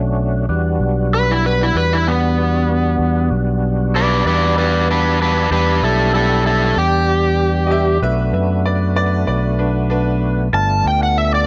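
A dry, close-sounding fragment of soulful, smoky swung blues over Em7, Bm7 and G7: a gritty tonewheel organ with chorus vibrato and a slow rotary speaker sits under a round, up-front fingered electric bass, an overdriven slide guitar carries the melody from 1.1 s, and a worn, slightly detuned upright piano with audible action noise and slapback echo adds a second line from 7.7 s to 10.4 s.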